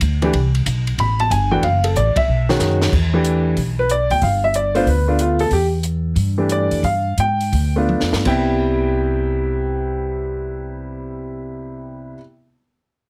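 Upright bass and a compact cocktail drum kit open this swinging jazz piano trio excerpt together, and a clear upright piano joins almost immediately to carry the melody over a sophisticated, relaxed mood. The plucked bass sits up front with a thumpy, woody tone from its steel strings. The dry kit pairs dark cymbals and a high-tuned snare with a punchy kick. The piano's smooth, vintage voice and long sustain glide through harmonies such as Cmaj7, F#mmaj7, Em7 and G9. The band hits a shared accent at 2.1 seconds, and short drum fills mark the turns between passages, with the trio easing back from 5.5 seconds before the drums drop out at 8.4 seconds, leaving bass and piano to settle onto Cmaj7. Light reverb and a heavily compressed, radio-like sound give the whole cut a broadcast character.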